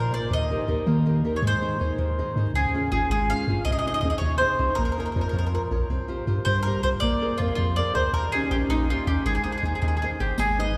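Italian folk serenade in a lively, romantic 6/8, with a bright, double-strung bowl-back mandolin picking the melody up front over fingerpicked nylon-string guitar with audible finger squeak, a deep, punchy sine sub bass with a pitch-drop attack, and a riq whose hard-hand jingles flick in from the background only at 10.4 seconds, all bathed in the long, wet reverb of a cathedral-like hall in this excerpt cut from a longer piece.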